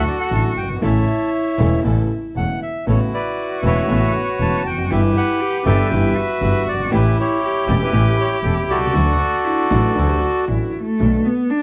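A reedy, bright bandoneon carries the melody from the start of this playful, elegant tango in D major, moving at 118 BPM with a rubato feel, while a bowed cello with vibrato traces a smooth second line beneath it. Almost at once a concert grand piano with audible action noise and deep bass fills in the accompaniment, a nasal, boxy bowed double bass sits up front on the bass, and a very quiet, dark studio string section adds soft-attack stabs. A clarinet in classical style adds brief second-line phrases in the background at 5.4 s and again from 9.4 s, and the excerpt has the dry, close sound of a small 1970s-style studio room.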